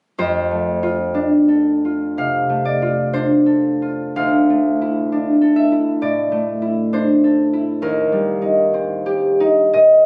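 A fingerpicked concert harp plays alone from 0.2 seconds, its ringing, up-front tone spanning the instrument's low and middle registers in a peaceful, graceful classical passage cut from a longer piece. The rubato phrasing in 4/4 drifts through F6, Dmadd9 at 4.2 seconds and Eb6 at 7.8 seconds, with the harp tuned to A4 = 444 Hz. Captured on a phone in a recital hall, the sound carries a moderate hall reverb along with added studio reverb and compression.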